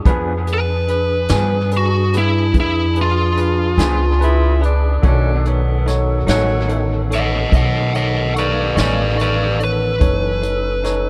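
A tonewheel organ, its fat, clean chords turning through a slow rotary speaker in the background, opens this swaggering slow blues alongside a woody, growly upright bass that sits up front. Within moments a vintage brush drum kit with a punchy kick and rolled-off top joins in, along with a bell-like tine electric piano and a slightly broken-up, lo-fi electric guitar through a small old amp, both carrying tape echo, and the guitar adds tremolo. At 0.5 seconds a biting, overdriven lead guitar takes the melody up front, and from 4.2 to 6.9 seconds a warm tenor saxophone adds a second line with subtone, vibrato and scooped notes in a vintage jazz style. The laid-back 12/8 groove moves at 48 BPM in B mixolydian over an Fdim7 that gives way to B9, and the small-amp guitar drops out at 9.0 seconds. The mix is dry in reverb but echo-heavy, and this passage is cut from a longer piece.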